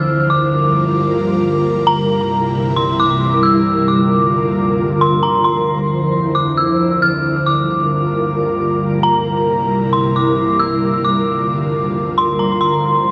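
An ethereal, airy pad sits up front for the whole 13.1 seconds, blending detuned sawtooth, square and triangle layers with a sub octave and a noise layer, its slow attack and long release softened further by ensemble chorus and built-in reverb. Above it, an eerie, inharmonic FM synth bell with a vintage, warbling character carries the high melody, its fast-attack notes decaying through chorus, phaser and delay. This spacious, hazy hip hop piece moves in a half-time feel at 134 BPM over Gm7 and C7 chords, shifting briefly to Dm9 at 5.5 seconds, all within dark production and a shimmer reverb with a 5.0-second tail.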